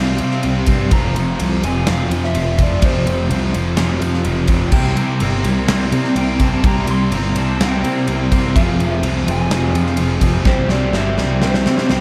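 A dark, warm production frames this dreamy, wistful shoegaze and dream pop rock excerpt at 126 BPM in C mixolydian, where a punchy, up-front gated 80s drum kit with bright cymbals sits over overdriven fuzz picked bass, a bright, double-tracked distorted guitar riff and a dark, chorused fuzz guitar in the background, while a slightly broken-up guitar through a small old amp carries a distant delayed melody, a raw garage guitar with reverse reverb joins at 4.7 seconds, and a drum fill closes it from 10.5 seconds.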